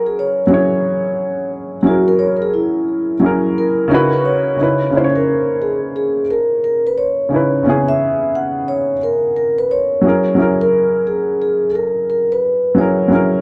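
A dark, warm production sits in a moderate plate reverb with a 2.9-second tail, giving this short cut from a longer hip hop piece a melancholic, reflective air. It moves at 88 BPM in 4/4 with a 66% swing on the 16ths, in C# dorian and tuned to A4 = 441 Hz. Up front, a vibraphone played with soft mallets and its motor off carries the melody, its metallic ring kept mellow. Beside it, a dark upright piano accompanies with a worn, woody, slightly detuned character, a short sustain, audible action noise and a cassette-tape patina that makes it feel intimate. The harmony shifts from F#9 to C#m11 at 3.9 seconds, settles on C#m9 as a new section begins at 4.6 seconds, and returns to F#9 at 10.0 seconds.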